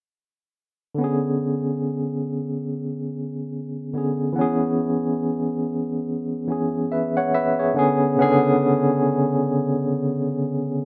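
The recording has a rough home-demo character, set in a small room whose moderate reverb gives the sound a short, close tail. This is an introspective, sultry R&B fragment, cut from a longer piece, played at a slow, swung pace on a single tine electric piano that carries the whole performance from 0.9 to 10.8 seconds. The piano sits up front through a combo amp, its bright, barky tone lightly overdriven and pulsing with a fast tremolo. It ranges from C#3 up to F#5, moving from Bm69 to C#m7 at 4.4 seconds. A new section begins at 7.7 seconds, settling back on Bm69 before the fragment breaks off.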